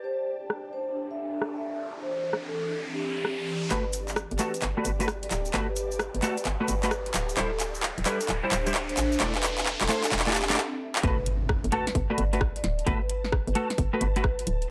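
Swung two-step garage at 131 BPM in G major sets a soulful, bouncy feel, as a mellow soft-mallet vibraphone melody with tape echo floats over an ethereal, airy pad colored by chorus, phaser and sidechain pumping, while at 0.5 seconds a background riser begins to build and an up-front garage kit enters with a woody snare, metallic hats, handclaps and rim clicks. At 3.7 seconds a clean hollow-body electric guitar adds compressed stabs, joined by a punchy, hollow FM bass with tube saturation, a tight background kick and a grainy tube shaker. After a brief stop, the drop lands at 11.0 seconds with an electronic impact on a Gmaj9 chord, the whole excerpt carrying a dry, gritty hardware character.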